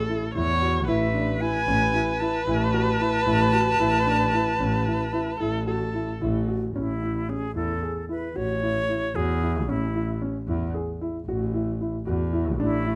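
Closely miked with light reverb, this playful, shimmering contemporary chamber piece in 11/8 at 226 BPM (eighths) in A major sets a bright, airy concert flute melody from 0.8 seconds over a clear, focused bowed double bass line, dark, mellow baby grand piano arpeggios and a rich viola second line with portamento that drops out at 6.4 seconds and returns at 12.6 seconds.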